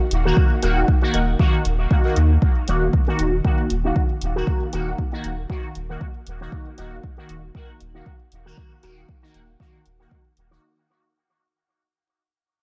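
Deep and hypnotic, this dub techno excerpt moves at 117 BPM in Eb minor with a light 16th-note swing, fading out across its full length in a dry, echo-heavy mix dusted with vinyl crackle. An up-front, overdriven deep kick leads the drums beside a quieter overdriven electronic hi-hat, while a round, mellow sine sub bass pumps with sidechain and a juicy, detuned sawtooth polysynth lays resonant, filter-swept stabs soaked in chorus, phaser and dub echo. A warbling, nostalgic lo-fi keys riff surfaces very quietly from 1.1 to 2.2 seconds.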